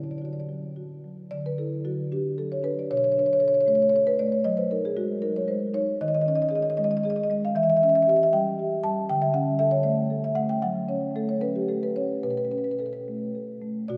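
In a rubato 6/8 at 77 BPM counted in dotted quarters, this flowing, playful contemporary classical excerpt for solo marimba with soft mallets moves through chords such as Dadd9, Bm9 and Eb7sus4 before settling in B minor from 7.6 s, its woody, round, mellow padauk tone spanning B2 to A5 at A4 = 438 Hz, the instrument sitting up front yet heard from further back in a wet cathedral reverb with a 5.0 s decay.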